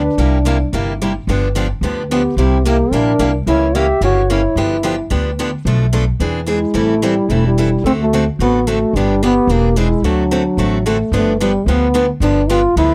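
A mellow, punchy trombone carries the melody with a light vibrato in this lively, playful stretch of acoustic string swing, while a breathy, whispered clarinet sits behind it as a soft second line until about 10.9 seconds. An up-front upright bass gives a woody, thumpy pizzicato pulse on gut strings, and a bright picked steel-string acoustic guitar comps through jazzy changes from 0.2 seconds, finger squeaks audible. The sound is dry and close, like a 1970s studio session, and the passage is cut from a longer piece.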